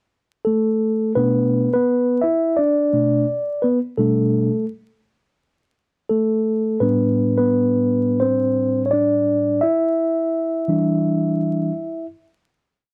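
A mellow, clean tine electric piano enters at 0.4 s over a bed of vinyl crackle, playing a short pickup before settling into the head at 1.2 s in a cool, nocturnal hip hop piece at 85 BPM in 4/4 with a swung 16th-note feel. Up front and direct, the piano is heard solo with free comping and quartal voicings, moving through Bm7, A7sus4 and Em7 across a range from A2 to E5. A small room adds a short, moderate reverb to the dark, warm production, and the piece ends at 12.5 s.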